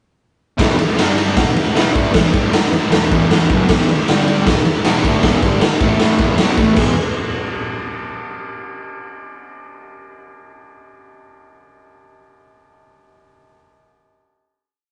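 A straight 4/4 garage stomp at 156 BPM drives this short, raw and menacing garage rock piece in E minor, where a punchy, gritty, up-front drum kit of kick, snare, ride and crash backs a distorted, double-tracked fuzz guitar power-chord riff moving between Em, G5 and A5, while a very quiet, mellow combo organ holds clean triad chords with light vibrato beneath, all in a rough rehearsal-room recording with light reverb, before the riff gives way to a final chord at 6.8 seconds.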